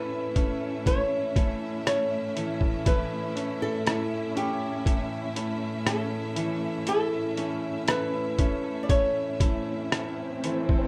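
A muffled, thumpy trip hop sampler-style drum kit, pitched down, compressed and tape-warm, sits up front from 0.4 s with hi-hat, kick drum and rim click at a slow 60 BPM beneath this tender, hopeful pop ballad excerpt, where a fingerpicked acoustic flamenco guitar carries the melody over an open, deep-bassed concert grand piano, a lush, bowed symphonic string section holding smooth sustained chords with vibrato, and a clean, scooped, direct-recorded electric guitar picking arpeggios, all in a dry, rough home demo mix.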